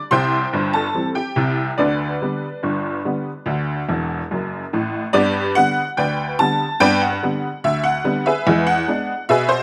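Ragtime piano in G major at 72 BPM in a straight 2/4, this jaunty, playful clip, cut from a longer piece, features a lone honky-tonk upright piano whose detuned, jangly, vintage tone sits bright and up front, spanning E1 to C6. The dry, open sound carries little reverb and has an outdoor feel. The harmony moves from C through G/D and D, a piano fill runs from 3.9 to 5.1 seconds, and a second section begins on G at 5.1 seconds before landing on E7.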